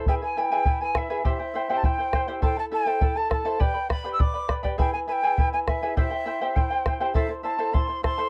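An airy, end-blown wooden large quena carries the melody with gentle vibrato and a soft attack, sitting somewhat distant in this festive, earthy Andean folk excerpt in a straight 2/4. Up front, a fingerpicked charango adds a shimmering accompaniment from its double strings, while a round acoustic bombo supplies percussion, close and dry. The chords cycle through E, C, Am and G, and the whole ensemble is captured in a dry, close 1970s-style studio sound.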